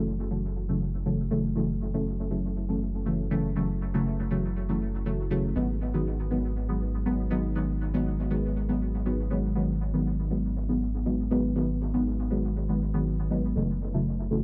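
Dub techno with a deep, hazy mood, cut from a longer piece. Dark, detuned chord stabs with a short decay move from F#m7 to G#m7 and back, colored by chorus, phaser, dub echo and a filter sweep across the full 14.4 seconds. Beneath them a round, soft sub bass with tube saturation holds the low end, the whole set in an echo-heavy mix with light reverb.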